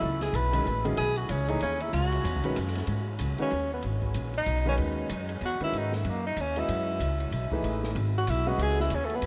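A swung 3/4 pulse at 189 BPM drives this brief modal jazz fragment in G# phrygian, cut from a longer piece, with a spiritual, searching mood. The upright bass plays from the start, its pizzicato tone woody and up front on steel strings, while the open jazz drum kit joins at 0.2 seconds with hi-hat, kick, ride and snare, heard smooth and dark with a boomy kick and a rolled-off top. A concert grand piano supplies accompaniment from 0.5 seconds, its sound natural with deep bass, moving over harmony that opens on F#sus4 before shifting to G#m7 and F#m9. The mellow tenor saxophone carries the melody throughout and takes a solo from 2.9 seconds, its subtone voice marked by scooped notes and a distant, roomy quality touched with tape echo. A huge ambient reverb soaks the mix, giving the whole passage a dreamy atmosphere.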